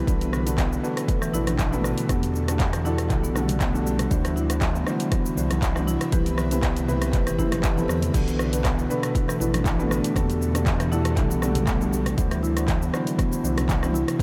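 A dreamy, reverb-soaked afro house excerpt in E minor at 119 BPM, hypnotic and warm, where a punchy electronic kick and a dark-hatted deep house kit of cabasa, crash, handclaps, rim clicks and toms set a lightly swung groove alongside very quiet, distant congas. A round, tube-saturated sub bass and woody marimba arpeggios with delay pump against the kick, while a felt-muted upright piano adds soft, intimate stabs. Behind them an ethereal, detuned pad with chorus and phaser sustains chords moving from Bm7 through Em11 and D9 to Cmaj7.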